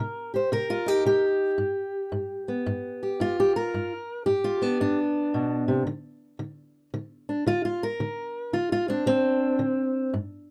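A swung eighth-note lilt in 4/4 drives this short excerpt of acoustic country blues, played by a single fingerpicked steel-string acoustic guitar. The mood is gritty and swaggering, with the guitar carrying everything alone from 0.0 to 10.5 seconds across a range from G2 to C5. Its tone is warm and up front, and the finger squeak on the strings adds a close, human texture. The harmony moves from Cm7 to G7 at 1.6 seconds and then to Dm7 at 5.9 seconds. The sound is that of a dry, intimate 1970s-style studio recording, touched by only a light reverb and tuned slightly below concert pitch.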